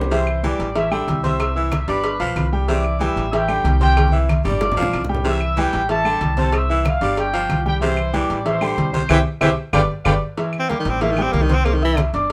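A straight 4/4 salsa groove at 187 BPM drives this sunny, joyful passage, built on low-tuned, thick-skinned congas, tight, high-tuned bongos and cowbell set in the background, and woody claves. A dark pizzicato upright bass with steel strings sits up front beneath a clear, natural grand piano accompaniment, moving through Am7, C and G7 chords. A tight trumpet section with vintage vibrato carries the melody, while a raspy, gritty baritone saxophone plays a second line. Drum fills and a band accent lead into 10.4 seconds, when a breathy tenor saxophone, punchy with a smooth top, steps forward for a short solo. Light reverb surrounds the mix.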